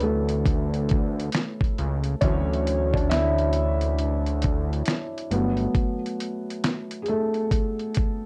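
Nostalgic and dreamy, this short lo-fi hip hop excerpt in D major drifts at 68 BPM with a lazy swing, moving from Dmaj9 to Gmaj9 at 5.3 seconds. A soft, muted upright piano with audible action noise takes the lead throughout, filtered and tape-coloured, while a fat, tube-saturated analog bass thickens the low end until 5.7 seconds and a gritty, overdriven sampler-style kit thumps along with kick, snare and hi-hat. Light reverb and worn cassette tape with warbly pitch drift give the whole piece a hazy, intimate glow.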